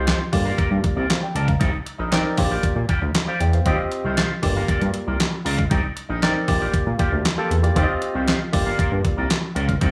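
Early-eighties boogie funk with a slick, funky mood, cut from a longer piece, where a crisp, thumpy 8-bit drum machine sits up front with handclaps, hi-hat and snare, a fat, detuned sawtooth analog bass holds the low end, a barky, bright tine electric piano comps on the chords from Gm7 through Cm9, Bb6 and Eb69, and a twangy, picked electric guitar plays a riff through an envelope filter and lush chorus, all set in a moderate recital hall reverb.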